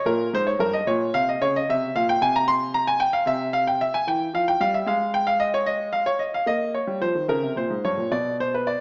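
Flowing and solemn, this short excerpt from a baroque-style suite movement unfolds in 12/8 with a rubato feel, its harmony drifting through diminished and dominant colours before resting briefly on C. A solo grand piano with a worn, vintage, smooth tone sits up front, ranging from G2 to C6 across the full 8.8 seconds. A moderate recital-hall reverb surrounds it, heard through a small-speaker sound.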